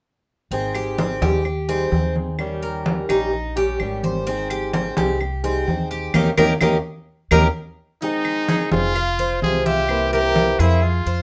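Latin music in the Cuban son and guajira vein, relaxed and danceable, with a fingerpicked swing-style acoustic guitar giving boxy accompaniment while an up-front, metallic Cuban tres picks arpeggios on its double strings over a woody, dark pizzicato upright bass and ringing, low-tuned congas played with soft hands. Dry claves sit in the background, and the full band hits an accent from 6.1 to 8.0 seconds before a brilliant trumpet with vibrato takes the solo melody at 8.0 seconds. Light reverb surrounds this excerpt, which is cut from a longer piece.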